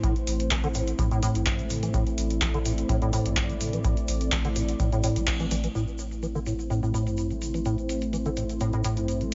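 Trippy, driving acid house at 126 BPM in A minor, cut from a longer piece, where a squelchy, resonant acid bass riff with chorus and tape echo rides a filter sweep until 5.8 seconds over a moody detuned sawtooth pad, a round sine sub bass, a booming analog drum machine with metallic overdriven hats and handclaps, an overdriven deep kick that stops at 5.4 seconds, and a grainy tube shaker in the background, with the pad, acid bass and sub bass pumping with sidechain in a dry, dark mix.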